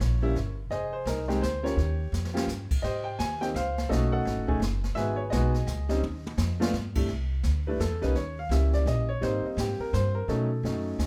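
Jazz piano trio in a swinging, playful 3/4 at 169 BPM in Ab major, where a clear, up-front grand piano carries the melody over woody pizzicato upright bass and a brushed drum kit with dark cymbals and a boomy kick, the drums adding fills at 2.1 and 6.0 seconds before the piano takes a solo from 7.1 seconds, all in light reverb.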